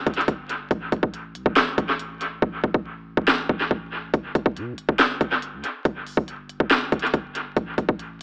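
Trap-flavored hip hop in G major at 140 BPM with a half-time feel, this brief fragment carries a triumphant yet wistful mood. An electronic, up-front trap kit with a hard-clipped kick, sharp snare, crisp hats and handclaps is soaked in dub echo, its hi-hats dropping out from 2.4 to 4.1 seconds, while a clean, sine-like 808-style bass with a fast attack sits lower and quieter, booming deep and dark as each note decays. The echo-heavy mix sits in a moderate spring reverb and is colored by vinyl crackle and a lo-fi AM radio tone.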